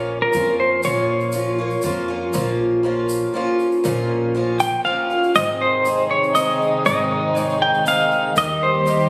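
A straight 3/4 pulse at 120 BPM drives this hopeful, anthemic indie folk passage, cut from a longer piece and tuned to A4 = 442 Hz, with a building arrangement that moves from Bbm through Ab to Eb. A shimmering, octave-doubled twelve-string acoustic guitar is picked up front over a woody, growly pizzicato upright bass and a grainy egg shaker. Meanwhile, a compressed, scooped clean electric guitar carries the melody with tremolo and digital delay, pausing at 1.8 seconds and returning at 4.6. Dark chamber strings enter at 5.4 seconds with soft-attack, sul tasto chords and light vibrato, all set in a wet recital-hall reverb captured on a phone in the room.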